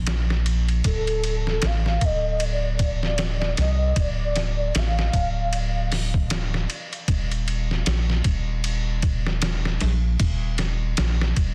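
Smoky and brooding, this short trip hop excerpt sits at 77 BPM in 4/4 with a lazy swing on the sixteenths, centred in D phrygian and tuned slightly flat of standard pitch. A soft, deep dub sub bass opens at 0.0 s and holds the low end throughout, its round, sustained tone placed up front. A sampler-style drum kit follows almost at once, pitched down and muffled, with a thumpy kick, a medium-tuned snare, hi-hat and ride cymbal, compressed and close in the mix. From 0.9 s to 5.9 s a pure, breathy sine lead floats above, gliding and warbling with vibrato and portamento, its dark, vintage character thickened by ensemble chorus and tape echo. The harmony rests on D minor before shifting to an E-flat power chord at 7.1 s, all within a dry, dense and heavily limited modern master.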